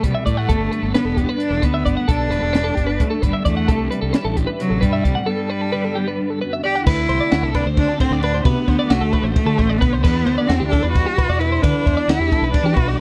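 A focused, up-front bowed cello with vibrato and slapback echo carries the melody from the start of this playful, wistful math rock and midwest emo passage in 7/8 at 264 BPM in G major, over a clean, compressed twelve-string electric guitar with ensemble chorus, a bright, twangy second twelve-string picking tremolo-treated arpeggios in the background, a growly fuzz-overdriven fingered bass and a dark, compact cocktail drum kit with a high-tuned snare and punchy kick, all captured in a dry, close 1970s-style studio sound as the chords move from Gadd9 through Cadd9 to a break at 5.3 seconds before the D7 and Em7 section from 6.9 seconds in this piece cut from a longer work.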